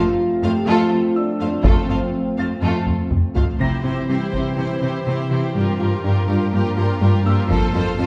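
Heavy, close and dry taiko drums stand out in this brooding, relentless hybrid orchestral and electronic film-score excerpt at 123 BPM, pounding from 1.6 seconds with a fill before the chords move from F through C and Gm7 back to F. Underneath, a lush symphonic cello section carries the bass, a dark French horn section holds distant chords until 3.4 seconds, and soft, expressive symphonic violins and focused violas fill the middle, while a warbling, lo-fi tape-like pad with chorus sustains and a round, tine-like thumb-piano synth pluck plays arpeggios in the background. A distant chamber violin section takes the melody from 3.6 seconds, a bright, worn concert grand adds high texture, and the whole piece sits in a wet recital hall.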